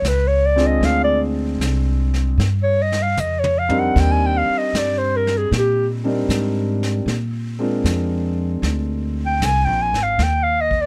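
A tender, late-night jazz ballad excerpt at 77 BPM with a gentle swing opens on an up-front clarinet solo with light vibrato over woody pizzicato upright bass and a vintage brush kit with a rolled-off top, joined at 0.6 s by an open concert grand piano with deep bass and long sustain, while a brief drum fill at 3.2 s and chords moving from Gm7 through Cm9 to Ebadd9 color a close, detailed and nearly dry recording.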